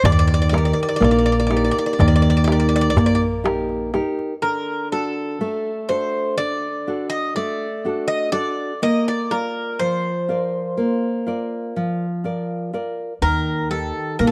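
Reflective and dark, this cut from a longer Greek folk piece moves in 9/8 at 123 BPM (eighths), with a straight feel and a light reverb over the band, while the chords travel Eb, D, Bb and back to Eb. The metallic, double-strung bouzouki carries the melody up front, its picked lines touched with octave-doubled strings, over a bright, fingerpicked classical nylon-string guitar with audible finger squeaks. A woody, thumpy pizzicato upright bass and a close, dry clay-shelled darbuka struck with hard hands drive the opening, with the darbuka dropping out at 4.3 seconds and the bass falling away at 4.0 seconds before returning at 13.2 seconds.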